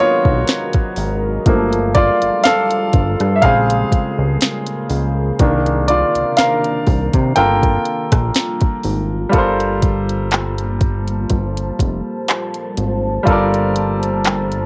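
Contemporary R&B with a sensual, late-night mood: a clear, polished baby grand piano takes a solo through the first 9.3 seconds, floating over a deep, moody ambient pad that sustains lush minor ninth chords with chorus and its own built-in reverb. A fat, saturated analog bass and a smooth electronic drum kit join at 0.3 seconds; the drums bring a soft kick, sharp snare, handclaps, rim clicks and warm, tape-warmed hi-hats, and sit up front with the bass and piano. The dry, home-cassette sound dulls the top end, and the excerpt settles onto a minor eleventh chord at 9.3 seconds.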